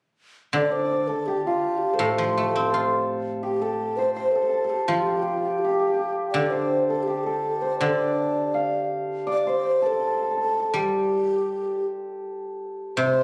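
In a rubato 2/4 at 82 BPM, this graceful, festive excerpt of Chinese traditional chamber music in G shang mode sets a breathy, hollow low xiao carrying the melody with vibrato and tongued notes over an up-front, shimmering hammered dulcimer second line and a silvery, fingerpicked guzheng accompaniment, while a distant, very quiet large dizi with a buzzing membrane and crisp attack slips in at 13.0 s just before the cut at 13.2 s, all captured on a phone in the room with light club reverb and compression.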